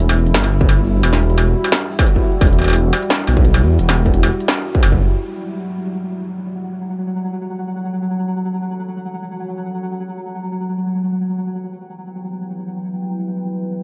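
A rumbling, detuned saw bass drives the opening drop of this dark, tense half-time drum and bass cut at 174 BPM in F# phrygian, joined by an industrial kit with a clanging snare and crisp hats and, from 0.6 seconds, a distorted electronic kick, all of which stop by about 5.2 seconds. Beneath them a deep, moody ambient pad holds sustained chords from Emadd9 to F#m and back, its chorus and reverb colouring it as it pumps from sidechaining. Once the beat falls away, a filter sweep moves across the pad while a pulsing, tempo-synced gated texture enters up front at 5.4 seconds and carries on to the end in a digital ambience.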